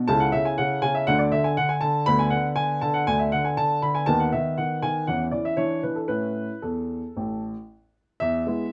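Loose and rubato over uneven beats at about 118 BPM in 4/4, this elegant, playful classical-period sonatina fragment in A major features a solo baby grand piano with an open tone and long sustain, heard up front through close, detailed microphones in a dry room, spanning A1 to B5 and moving through chords from A/C# to a closing E across 8.7 seconds.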